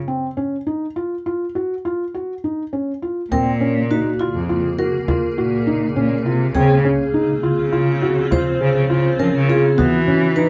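A soft, intimate felt-muted upright piano plays arpeggios alone from 0.1 seconds, and at 3.3 seconds a bowed cello bass with vibrato and portamento, a ringing, metallic vibraphone second line with slow motor vibrato and a deep, close frame drum join in, followed at 4.0 seconds by a cloudy, detuned granular pad holding sustained chords in its own reverb, giving this playful, restless contemporary chamber piece in 11/8 a dark production with light reverb.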